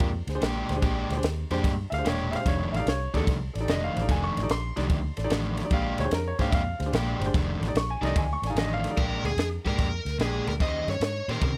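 A woody upright piano takes the solo spot for the first 9.0 seconds of this swaggering, laid-back electric blues shuffle at 147 BPM in Bb mixolydian, with a clear grand piano in accompaniment beneath it, both pianos carrying plate reverb. An up-front, overdriven semi-hollow guitar plays the riff over a round, foam-muted fingered bass and a compact cocktail kit with dark cymbals, a high-tuned snare and a punchy kick, as the chords move between Bb13 and F13. At 9.0 seconds a biting lead guitar with its own drive takes the melody as the harmony shifts to Bb6 and Eb6, in this short cut from a longer piece set in a light reverb.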